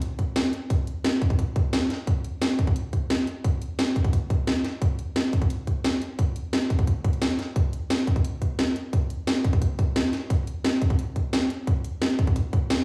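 Dark and tense, this drum and bass excerpt runs at 175 BPM in a straight 4/4, cut from a longer piece and built entirely from percussion. An up-front electronic kick, tight and overdriven, sits beneath a layered drum kit whose cracking snare and bright hi-hats carry their own overdrive, both parts treated with studio reverb. The sound has the character of a big system playing in a bare room, with a moderate digital room reverb hanging around each hit.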